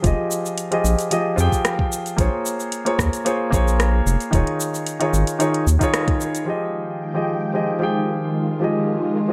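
Relaxed and smooth, this sunset chillout fragment, cut from a longer piece, moves in a straight 4/4 over a Fm9, Bbm7 and Eb9sus4 progression. A grand piano with short sustain and a touch of delay plays accompaniment up front throughout, while a round, deep analog bass with a fast attack anchors the low end until 5.8 seconds. An electronic kick with a soft, tape-warmed tone sits beneath a produced R&B drum kit of metallic hats, rim click and shaker, whose hats, snare and percussion are filtered and placed in studio reverb. The band hits an accent at 5.9 seconds, the drums fall away shortly after, and at 6.5 seconds a silky, vintage string machine with slow attack, long release and ensemble chorus swells into dark, evolving sustained chords beside the piano. Light reverb and digital ambience round out the mix.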